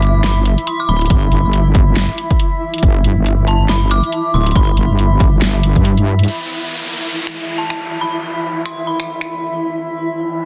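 A half-time 4/4 groove at 139 BPM, swung 58% on the sixteenths, drives this brooding, meditative fragment of deep dubstep, cut from a longer piece and tuned slightly sharp of concert pitch. The deep house drum kit of crash, finger snaps, hi-hat and a fat snare runs through overdrive, and a punchy, overdriven electronic kick joins at 1.1 s. Up front sits a heavy, saturated wobble bass, sawtooth and sine layers detuned with chorus, holding a G harmony until it drops out at 6.3 s, where the chords give way to none. Above, an eerie, inharmonic FM bell rings high with chorus and dub echo, while a cloudy granular pad, mellow and wave-folded, swims in its own reverb through to the close. Once the bass falls away, a downlifter sweeps through, and a riser arrives at 9.7 s, all inside a dense, heavily limited, dry modern master.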